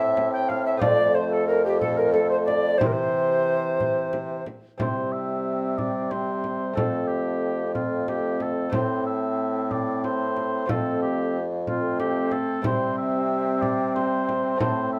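A moderate stone-room reverb surrounds this courtly, stately consort dance in a steady 6/8, heard as a section cut from a longer piece. The mellow oboe carries the melody with light vibrato, a soft attack and a smooth top. Alongside it, a tenor recorder plays a second line with an airy, wooden tone, a crisp attack with chiff and expressive vibrato. A distant, roomy trombone and a very quiet, delicate fingerpicked lute with double gut strings fill in the accompaniment. A clear, present bassoon holds the bass up front, and a small, bright frame drum, close and dry, keeps the pulse from 0.2 s. The harmony moves between A minor, F and C, with a new section beginning at 4.8 s.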